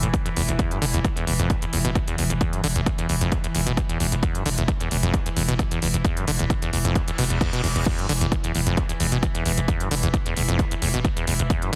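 A heavy, overdriven electronic kick drives this excerpt of peak-time techno alongside a squelchy, resonant sawtooth acid bass riff with filter sweeps and digital delay, a growling, buzzy 808-style bass, an overdriven techno kit with smooth hi-hats and crash, and a background drone of ring-modulated, shifting overtones with chorus, all three pitched parts pumping under sidechain, while a reverse cymbal sounds in the background at 7.1 seconds, everything pressed into a heavily compressed, radio-like sound with light reverb for an industrial feel.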